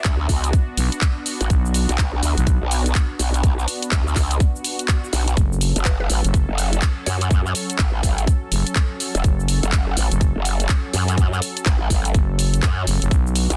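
Dense, heavily limited and bathed in digital ambience, this aggressive, bouncy bass house excerpt at 124 BPM in F# minor swings from Bm to F#m as a tight, up-front electronic kick and a garage kit of cabasa, handclaps and hi-hat drive a detuned, formant-filtered growl bass and a thick, growling FM bass entering at 0.8 s, both pumping beneath an evolving, resonant sawtooth pad, with a background electronic swell at 4.6 s and a woody, round mallet-like synth pluck with dub echo arriving at 5.9 s.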